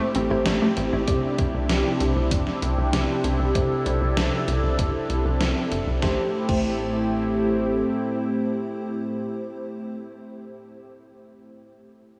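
A dreamy, reverb-soaked mix with a huge ambient tail opens this moody, cinematic synthwave fragment, cut from a longer piece, where a swirling, detuned analog pad holds sustained chords up front with phaser, chorus and sidechain pumping, while a bright, round analog pluck arpeggiates in the background only until 1.0 seconds. A lush, mellow FM electric piano with a soft pad layer plays stabs through chorus, phaser and diffuse delay, a filter sweep running across it until 6.0 seconds, as a tight, punchy sawtooth sequencer bass with tube saturation drives underneath. A gated 80s drum machine with crash, hi-hat and gated-reverb snare joins at 0.1 seconds and a thumpy electronic kick at 1.1 seconds, both re-recorded in a large room, as the harmony moves from Am7 to Cadd9 and back to Am7.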